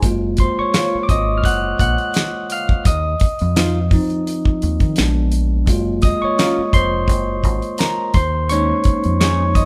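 Lightly reverberant and captured like a band playing live in one room, this smooth, sultry R&B and neo-soul cut at 85 BPM in a gently swung 4/4 features a bright, clean tine electric piano up front taking the solo over Gbmaj7, Cmadd11/Eb and Bb7b9 harmonies, a dark, round, punchy fingered electric bass, a dry, damped 70s drum kit with a fat snare, tight kick, hi-hat and finger snaps, and a full-bodied fingerpicked nylon-string guitar that enters at 0.7 s as a second line.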